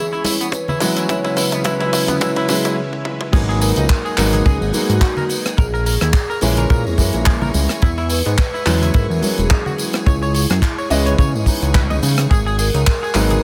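A fat, detuned sawtooth bass with a filter sweep arrives up front at the drop at 3.3 seconds, anchoring this sleek, cosmic nu-disco excerpt in G# minor at 107 BPM with a light 16th-note swing. A dry, tight kick sits just as close, joined by a tight acoustic funk kit with bright cymbals, handclaps, tambourine, rim clicks and toms, which plays a fill through the opening build-up before a brief break leads into the drop. Hard-handed congas, bongos and cabasa stay close and dry in the background. A twangy, compressed clean guitar, recorded direct, picks out a riff coloured by lush chorus, 12-bit sampler grit and delay. A clear grand piano enters at 0.8 seconds with pumping accompaniment, while a full-bodied vintage string machine holds slow-blooming chords in the background. A mellow, ringing vibraphone with soft mallets carries the melody through tape echo, all inside a small, lightly reverberant room, as the harmony moves through E6, C#m7, G#m7 and A#m7b5.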